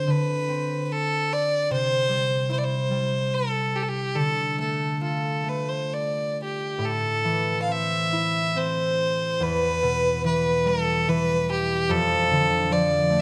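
A single bowed fiddle leads this haunting Celtic slow air, its clear, focused tone carrying the melody with a light vibrato from the opening moment to 13.2 seconds. Beneath it, a concert harp plays fingerpicked accompaniment in a lower register, its acoustic strings ringing warmly. Both instruments sit up front, and the close, detailed microphones catch the intimacy of each part, with only a light reverb around them. The mournful air moves in a flexible, rubato three-beat pulse. The harmony shifts from Amadd11/D through C and Dm, and a second phrase begins at 6.8 seconds over Am, Em and Dm/F. The recording is a short passage cut from a longer piece.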